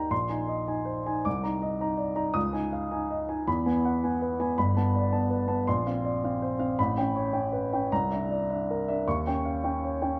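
A warm, open baby grand piano sits up front and plays alone across this 10.2-second fragment of a dreamy, hazy impressionist classical piece, drifting in rubato 6/8 at 54 BPM over lush ninth and added-ninth chords from A#9sus4 through Cm9 to a closing D#9, its long sustain spreading from deep bass to bright treble and captured by close, detailed microphones in a moderate recital-hall reverb.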